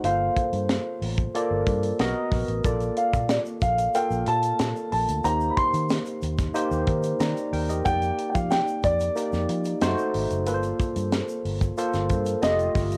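A home-cassette booth sound frames this slick, urban 1980s jazz-funk pop excerpt in G minor at 92 BPM, where a dark, mellow, boxy baby grand piano carries the melody over a barky, lightly overdriven tine electric piano with analog chorus, a round, punchy foam-muted fingered bass and a tight, up-front funk kit with a high-tuned snare, while a grainy tube shaker joins in the background at 2.6 s as the chords move from Gm11 through Bbmaj7, Eb6 and F13sus4 to F9.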